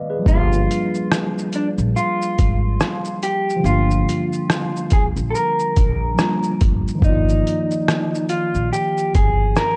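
A worn, slightly out-of-tune tine electric piano opens this nostalgic, mellow lo-fi hip hop excerpt alone, lightly overdriven, muffled by a low-pass filter and heard as if through its built-in speakers. At 0.3 seconds the rest of the band arrives on a Gm7 chord: a slightly broken-up electric guitar through a small old amp picks the melody up front, its lo-fi tone also softened by a low-pass filter. Beneath it, a pizzicato upright bass adds a woody, growly low end. A trip hop sampler-style kit of hi-hat, thumpy kick, rim click and shaker sits forward in the mix, compressed, pitched down and gritty, with a relaxed swung feel at a slow pace. The harmony moves to Ebmaj9/G at 7.0 seconds, and the whole is wrapped in a dark, warm production with digital ambience.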